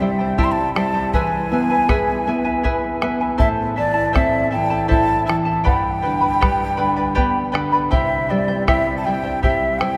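A breathy, hollow wooden quena carries the melody with vibrato and tongued notes in this wistful yet festive Andean folk excerpt in 3/4, moving through C, E, Am and G. Up front, a shimmering fingerpicked charango with double strings and a full-bodied nylon-string guitar in deep classical style share the accompaniment, while a dark bombo sounds close and dry. The recording places this ensemble in a vast, echoing space with a long cathedral reverb.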